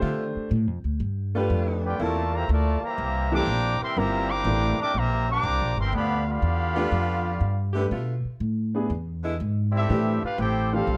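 Big band swing at 122 BPM in 4/4, this short energetic passage from a longer piece rides a swung eighth-note feel. A woody, growly pizzicato upright bass sits up front from the start, alongside an intimate grand piano, whose action noise is audible, playing accompaniment, and a distant, roomy saxophone section holding soft-attack sustained chords until 10.1 seconds. At 1.8 seconds a bright, nasal trombone section in straight mutes adds a second line, and at 1.9 seconds a mellow trumpet section, smooth on top with light vibrato, takes the melody up front. The harmony moves through Dm7, G7 and C7, then G7, Bm7b5, E and Am7. Light reverb and close, detailed microphones keep each section clear and present.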